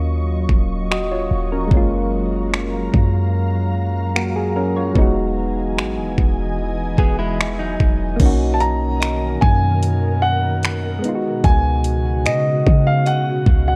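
The knocking kick, metallic hats, finger snaps and crash cymbal of an up-front trap drum kit lead this moody, longing contemporary R&B passage at 74 BPM, entering together at 0.5 seconds. Beneath them a deep, boomy 808-style bass sits on clean, mellow sine tones, while soft, round electric-piano-like synth keys with chorus and a filter sweep carry the accompaniment over an ethereal, airy pad of detuned sawtooth unison voices that swell in slowly and linger in their own reverb. The chords move from Ebm7 through Gbmaj7 and Emaj7 before settling onto Bmaj7 and Db7sus4. A clean, direct-recorded electric guitar picks brief arpeggios through spring reverb from 7.0 to 8.2 seconds, and then an intimate grand piano takes the melody up front at 8.5 seconds, its action noise audible and its notes sustaining long. A crystalline FM bell with chorus and delay glints in the background from 9.0 seconds, and the whole fragment, cut from a longer piece, is steeped in a worn, warbling cassette-tape ambience with drifting pitch.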